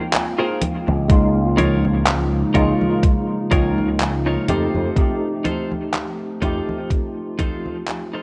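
A dreamy, nostalgic vaporwave fragment at a slow, lightly swung pace, cut from a longer piece and fading out from 2.4 seconds onward. A worn, slightly out-of-tune tine electric piano carries the accompaniment through overdrive, ensemble chorus and tape echo, while a mellow, detuned pad of square and triangle tones holds sustained chords in the background with chorus and its own reverb. A dark, clean electric guitar plays a picked, compressed riff with subtle chorus and tape echo, as a detuned 8-bit drum machine plays congas, handclaps and hi-hat. A bright, punchy slap bass with an envelope filter enters at 0.9 seconds, and a thumpy electronic kick sits up front from 1.1 seconds. Chords drift from Ab69 to Db69 and on to F7, and the whole mix wavers with worn cassette pitch drift under light digital ambience.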